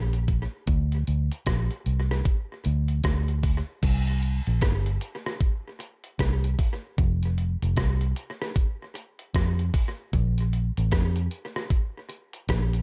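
A dry, close recording, cut from a longer piece, carries a smooth, longing lovers rock reggae groove with a swung sixteenth-note feel and a shift at 3.8 seconds. Up front, a vintage fingered electric bass sounds dark, round and punchy, its foam-muted low notes amped and sitting beneath everything from the start. A detuned 8-bit drum machine, sampler-style with a thumpy kick, crash, hi-hat and rim click, joins at 0.1 seconds with a tape-warm, small-room character dressed in gated reverb and tape echo.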